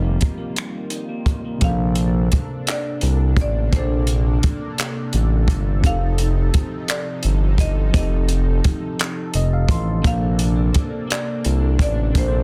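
Sultry and yearning, this slow six-eight R&B excerpt at 57 BPM is anchored by a smooth, gliding synth bass with vibrato and portamento, sitting up front beside a dark, tight cocktail kit of finger snaps, handclaps, hi-hat and kick. A woody marimba struck with hard mallets carries the melody through delay, while a clean tine electric piano adds background accompaniment with a fill at 9.0 seconds, and a detuned analog pad with chorus holds soft, sustained chords. A slightly broken-up electric guitar through a small old amp adds a dark second line at the opening and returns at 10.0 seconds, all captured dry in a dense, heavily limited modern master over chords such as F9sus4 and Bbmaj9.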